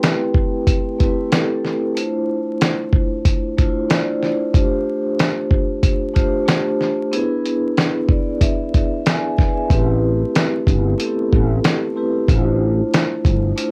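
Dark and moody, this boom-bap hip-hop excerpt moves at 93 BPM with a light swing in A minor. Soft-mallet vibraphone, mellow and airy with a slow motor vibrato and a filtered cassette tint, rings through chords from Am7 to E7 over a gritty, compressed sampler-style kit with a thumpy kick and a small-room character. At 9.7 s a bright, growly fretless electric bass with ensemble chorus enters up front, all set in light reverb with home-cassette haze and vinyl crackle.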